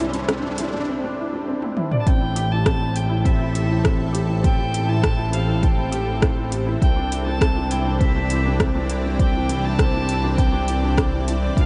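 A lush, detuned sawtooth pad, a soft felt-muted upright piano riff and an earthy bowed double bass section open this hypnotic, moving piano-and-strings electronica fragment at 101 BPM over Cadd9 and Am7, joined by a background riser and a deep house kit of metallic hats, rim clicks and toms that builds toward the drop, with a dark, nasal, period-style violin taking the melody from 2.0 s and an overdriven, up-front electronic kick landing at 2.1 s, the whole mix drenched in dreamy ambient reverb.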